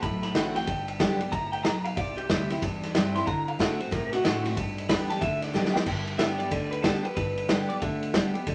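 A moderately reverberant room with a softened top end carries this rollicking, upbeat rockabilly cut in G major at 185 BPM with a swung feel, as a twangy, slightly broken-up electric guitar through a small old amp plays a clean solo until 5.9 seconds over a full-bodied, up-front picked dreadnought acoustic guitar, a woody, thumpy pizzicato upright bass with gut strings, and a punchy vintage drum kit with dark cymbals whose fill at 5.5 seconds leads into the next section, all moving through D7, G and C changes.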